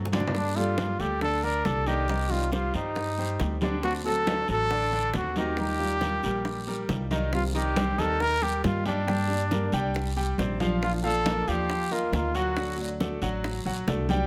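A brief drum fill opens this sultry excerpt of Cuban son and guajira, with a breathy, whispered trumpet entering at the same moment to carry the melody up front, intimate and close-miked with a soft attack, vibrato and a plate reverb sheen. Beneath it, a dark, full-bodied nylon-string guitar, thumb-plucked on old strings, supplies the accompaniment while a bright, polished concert grand spins brilliant arpeggios. A woody, thumpy upright bass on gut strings sits prominently in the mix, and a percussion bed of round, low-tuned bongos tucked in the background, very quiet, ringing vintage-sounding congas and a raspy, close and dry guiro keeps the 4/4 groove at 137 BPM moving. The harmony drifts through minor colours such as Gmadd9, Cm and D7, shifting into a new section at 7.3 seconds that leans on Eb, Gm and Bb before landing on D. The trumpet falls silent at 12.8 seconds, and the guitar, piano, bass and percussion play on in a moderate studio room ambience.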